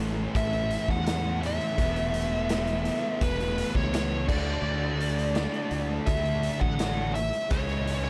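From the first beat, a raw garage drum kit sits up front, punchy kick and medium-tuned snare gritty and saturated in a bright stone room, beneath two thick fuzz guitars playing a riff in the background and a growling fingered bass with overdrive, all at 84 BPM in a straight 4/4 quiet-loud alternative rock setting. At 0.4 seconds a biting lead guitar enters up front with the melody, overdriven and carrying a slapback echo, over chords moving from A through Esus4 and D to C#m. The mood is bittersweet and cathartic, with light reverb and a small room ambience around this fragment cut from a longer piece.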